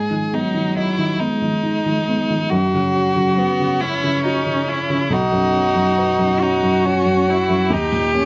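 A rich, bowed solo violin carries the melody up front with smooth, even vibrato, while a soft, felt-muted upright piano sits close and intimate alongside it, its mellow tone carrying audible action noise. A clear cello joins with a second line at 0.3 seconds, its vibrato equally smooth, as the fragile, melancholic neoclassical passage moves in a loose, rubato 6/8 through G#m, F#sus4, Badd9 and D#. Light reverb surrounds this short section cut from a longer piece.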